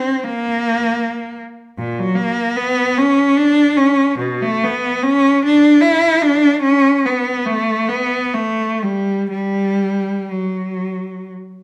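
Classical and expressive, this short passage cut from a longer piece features a single unaccompanied cello, heard lonely and yearning in B minor. The tempo drifts freely between 53 and 79 BPM in a rubato 3/4, so the pulse breathes rather than holds steady. The bowed cello sits up front with a rich, focused tone and vibrato, ranging from A#2 up to E4 and playing from the start until 11.3 seconds. A moderate recital hall reverb, with a decay of about 1.2 seconds, surrounds the instrument and lets its final notes linger briefly. Tuned to A4 = 442 Hz, the intimate performance conveys a searching solitude.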